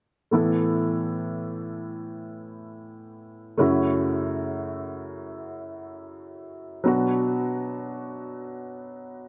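In free time, this emotional, heartfelt pop fragment in A major centres on a warm, open, up-front baby grand piano accompaniment that plays from 0.3 to 9.3 seconds, ranging from F#2 to A4 across Asus2, F#m7 and Bm chords, set in a moderate plate reverb with a 3.1-second decay.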